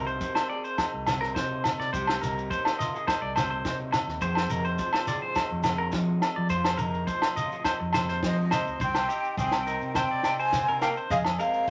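Highlife guitar band excerpt in C minor at 105 BPM with a bittersweet mood, where a bright, twangy clean electric guitar plays tremolo arpeggios up front over a dark, slightly broken-up lo-fi guitar, a round fingered bass, a compact cocktail kit with a high-tuned snare and punchy kick, ringing agogo bells and a grainy shekere, until at 8.3 s a breathy jazz flute takes the melody with a warm tenor saxophone in the background, all in a wet studio reverb over a Cm to Fm7 progression.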